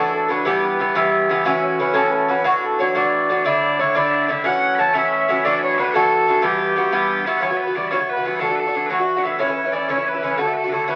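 Heard through the crackle of a very old 78 rpm record, this short Celtic jig cut from a longer piece sits in a wet studio reverb that gives it a roomy, aged glow. The mood is spirited and wild, with a straight 6/8 feel and tuning set to A4 = 438 Hz. A mellow, reedy accordion carries the melody from the start, its round single-reed tone set against an Irish bouzouki whose picked double strings ring acoustic and metallic, up front in the mix as accompaniment. At 3.5 seconds, loud bagpipes enter with a second line, bright and piercing, their continuous sound sitting somewhat lower in the balance than the other two parts. The harmony moves through chords such as Em, F#m7 and Dadd9, and the later section, from 7.4 seconds, closes on A and then D.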